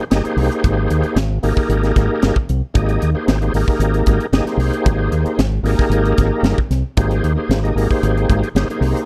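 Electric jazz fusion at 114 BPM in a straight 4/4, this slick, bright excerpt sits on a single Abmaj9 chord in Ab major, tuned slightly flat of standard pitch. An up-front, gritty overdriven tonewheel organ with key click, chorus vibrato and a slow rotary speaker carries the harmony, while a round, punchy fingered electric bass anchors the low end and a polished fusion kit adds a high-tuned snare, punchy kick and hi-hat. The dark, warm production keeps the sound dry and close, with the drums catching an airy studio room.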